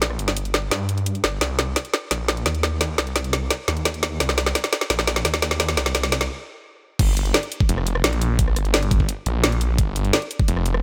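A snarling, distorted sawtooth bass growls up front through this short cut from a dark, aggressive technical drum and bass track in G minor at 172 BPM, sitting between F1 and G2 with a detuned, saturated edge, a sine layer, a moving notch, a fast attack and a sustained, compressed body. Beside it, an overdriven electronic drum kit drives a build-up with a long fill of woody snare, rim clicks, bright filtered hats and crashes. The fill breaks off at 6.3 seconds for a brief stop. At 7.0 seconds the drop hits, and a knocking, overdriven electronic kick enters up front alongside the bass and kit. A light reverb gives the straight 4/4 groove a touch of space while keeping the layered, produced sound tight and menacing.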